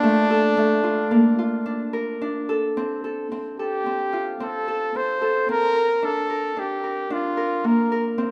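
A clear, close-miked flugelhorn sings a classical-style solo melody up front over bright, ringing fingerpicked arpeggios from an acoustic Celtic harp in this playful, hopeful contemporary instrumental fragment at 110 BPM in 5/4, moving from Bbmaj7 to Am at 2.8 seconds and on to Bbadd9 at 5.5 seconds, all set in a moderate recital-hall reverb.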